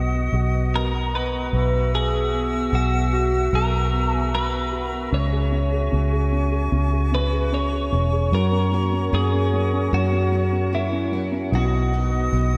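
Heartfelt and hopeful, this dreamy pop ballad excerpt sets a bright, twangy twelve-string electric guitar melody with subtle chorus over a soft, boxy felt-muted upright piano bathed in lush chorus, breathy flute-section chords with expressive vibrato, and a round, punchy foam-muted electric bass up front, while a picked parlour acoustic guitar joins in the background at 8.3 seconds with chorus and tape echo, all soaked in a lush hall reverb.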